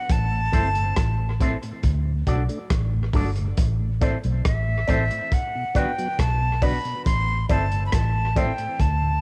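A breathy, reedy jazz flute opens this meditative roots reggae excerpt at 69 BPM in A dorian, carrying the melody through cassette tape and tape echo over a dark, foam-muted fingered bass, a gritty, saturated breakbeat kit of tight kick, hi-hat and rim click, a mellow tonewheel organ with slow rotary speaker in the background, and a twangy envelope-filtered electric guitar with tremolo, while a cowbell joins at 4.0 seconds, the hypnotic Am, D and Bm changes sitting in a small-room home cassette sound.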